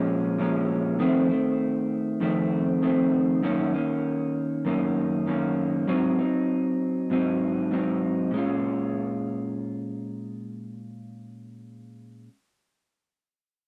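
Indie pop in Bb minor at 98 BPM in a straight 4/4, this hazy, lonely piece features a lone electric guitar through a small old amp, picked with a twangy, slightly broken-up tone and a subtle chorus and vibrato, sitting up front across the full 12.3 seconds. It moves through Bbm7, F7, Ebm7/Gb and Ab7 before returning to Bbm7 at 8.3 seconds, where a new section begins. The dry, close 1970s-style studio sound carries a light reverb, and the recording is cut from a longer piece.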